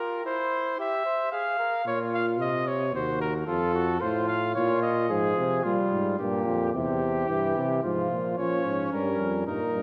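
In a steady, straight triple metre, this short cut from a longer classical canzona for brass ensemble unfolds in a contemplative, solemn mood, its imitative lines set in a wet scoring-stage reverb. A warm-toned cornet carries the melody up front with light vibrato, alongside a mellow, smooth-topped trumpet playing the second line throughout. A clear bass trombone with a soft attack joins at 1.9 seconds to supply a present bass. At 5.1 seconds the cornet falls away and a trombone enters with accompaniment, its sound distant and roomy. The cornet returns at 8.4 seconds as the music moves into a new section, with harmonies moving through chords such as Fm/Ab, Bbm and Cdim/Eb.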